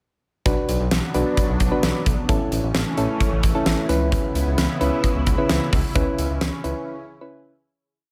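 Driving and nocturnal, this short synth-pop piece sets a huge arena drum kit with a fat snare and punchy kick up front over a smooth, saturated synth bass, while soft, round electric-piano-like keys play syncopated chords with chorus and a lush, detuned unison pad holds chords through chorus and phaser, all in light reverb, moving from Bm to A to C#m7 before the drums and bass stop at 6.7 seconds and the piece fades out by 7.8 seconds.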